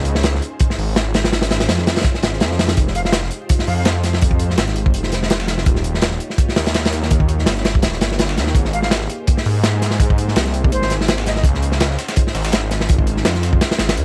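A dry, intimate recording dusted with vinyl crackle opens this atmospheric, nostalgic drum and bass excerpt, a jungle cut at 166 BPM in 4/4 with a light swing on the sixteenths. A crunchy, saturated breakbeat kit sits up front from 0.1 seconds, its tight kick, medium-tuned snare and hi-hat sounding dark and gritty with a rolled-off top, while a thick, beating detuned saw bass growls menacingly alongside it with a fast attack and sustained notes. Behind them, a silky vintage string machine holds slow-blooming chords through its ensemble chorus, moving from Dbmaj7 through Fm7, Eb7 and Abmaj7 before returning to Dbmaj7. A second, compressed sampler-style break joins in the background at 2.8 seconds, its hats, snare and room thinned by high-pass filtering. An airy silver flute with vibrato and an unsteady, tongued delivery slips in briefly around 3.0 seconds and again from 8.7 seconds, coloured by 12-bit sampler grit and dub echo, and the kick drops out for the final moment from 13.6 seconds.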